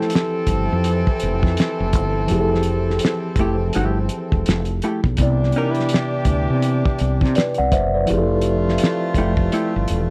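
A swung 83 BPM groove in 4/4 opens this soulful R&B and neo-soul excerpt, driven by a cloth-damped, thuddy drum kit with a fat snare, tight kick and gritty, muffled top, joined at 0.5 s by a round, dark fretless bass sitting up front. A mellow, clean tine electric piano carries the accompaniment while a tight jazz-style horn section adds stabs with light vibrato, and a picked, compressed hollow-body jazz guitar plays a second line until 9.7 s. The harmony moves from Fmaj9 to Cmaj9 and back in F lydian, all captured in a dry, close 1970s-style studio sound with a warm, lo-fi character.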